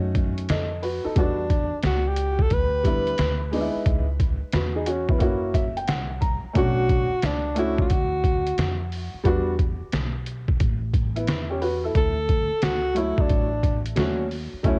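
Jazz-hop with a warm, cool mood at 89 BPM in D major, swung on the sixteenths, where a gritty, compressed, pitched-down sampler drum kit with a thumpy kick, medium-tuned snare and hi-hat sits up front beside a boxy, woody upright piano playing short-sustain chords with a fill at 5.2 seconds and a pizzicato steel-string upright bass, while from 1.2 seconds a breathy, subtone alto saxophone carries the jazz-style solo melody with vibrato and scooped notes through analog delay, all in light reverb on a home cassette recording.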